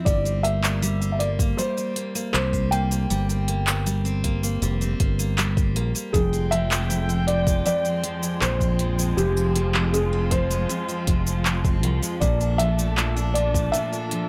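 Hopeful and pastoral, this folktronica excerpt sets a bright, full-bodied steel-string acoustic guitar picking arpeggios against a felt-muted upright piano that carries a mellow, intimate melody, both touched with delay. A punchy, up-front electric bass and a soft electronic kick anchor the groove, while crisp hi-hat, cabasa and handclaps from an organic electronic kit add texture. At 6.1 seconds a veiled, con sordino string quartet enters with sustained chords roughened by vintage 12-bit sampler grit, all within a light reverb.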